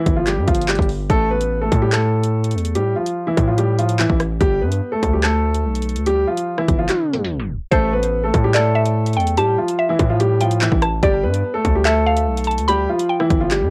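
A half-time drill groove at 145 BPM in 4/4 drives this tense, menacing hip hop passage, cut from a longer piece. The electronic drum kit sits up front with a hard-clipped kick, warm hi-hats, handclaps and rim clicks. A distorted 808-style bass lies beneath it, a heavy, saturated sine tone with a noise layer, a fast attack and a decaying tail, pushed forward and aggressive under tube saturation. An upright piano carries the melody from the opening moment with a warm, natural, woody tone, coloured by cassette tape over chords that move between A5 and G. A tape stop pulls the track into a break from 6.9 to 7.7 seconds. After that, a mellow, round FM synth pluck with a mallet-like, percussive attack adds a second line, thickened by chorus and tape echo. The whole track has light reverb and the worn character of a home cassette recording.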